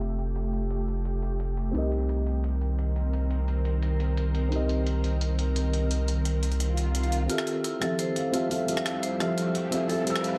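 Opening on a filter sweep beneath a boxy, felt-muted upright piano with tape echo, an ethereal detuned pad and a deep, saturated sub bass, this lush, uplifting liquid drum and bass fragment at 173 BPM in F major rides gritty, pitched-up jungle sampler hi-hat and rim click, until a background electronic swell at 6.7 seconds leads at 7.3 seconds into a build-up where the sub bass stops, a riser sounds and a metallic, ringing vibraphone plays arpeggios with tape echo.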